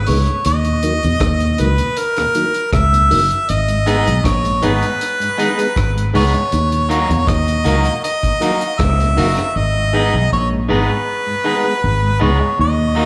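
A clear, up-front harmonica with light vibrato and dub echo carries the melody over a round, foam-muted fingered bass, a mellow tonewheel organ turning through a slow rotary speaker, and a dry, dark reggae drum kit that drops out at 9.6 seconds, while a bright, twangy guitar at the edge of break-up joins at 3.9 seconds in this heavy, deep dub reggae excerpt steeped in spring reverb.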